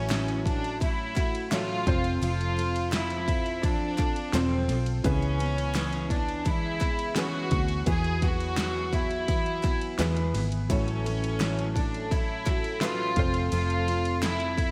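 This excerpt of piano-driven pop opens with everything arriving almost at once: a warm, up-front violin section carries the melody over a felt-muted upright piano, whose soft, intimate accompaniment sits in the background, while a mellow French horn section adds a second line through a digital delay. At 85 BPM in a straight 4/4, the uplifting A major progression moves from A6 to F, then C#m7 and E, before returning to A6 and F again. A picked steel-string acoustic guitar plays a full-bodied riff treated with lush chorus, and a vintage foam-muted electric bass gives a dark, round low end. The pop drum kit enters at 0.1 seconds with a punchy kick, fat snare, hi-hat and ride cymbal, its gated reverb and up-front placement defining the sound. Very quiet, crisp group handclaps add a saturated human touch, all framed by a bright 1980s-style digital production with light studio reverb.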